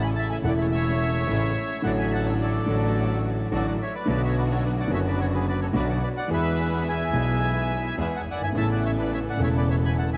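Tango in A major at 107 BPM with a rubato, nostalgic and passionate feel, this short excerpt moves from A through D/A, Bm and E before settling on Aadd9. A reedy, bright bandoneon carries the melody over an up-front concert grand piano whose warm, intimate accompaniment has deep bass, audible action noise and a vintage character. A clear, focused bowed double bass with vibrato holds down the low end, while a dark, lush symphonic string section adds expressive bowed stabs in the background, the whole ensemble placed in a vast, echoing space with a huge ambient reverb.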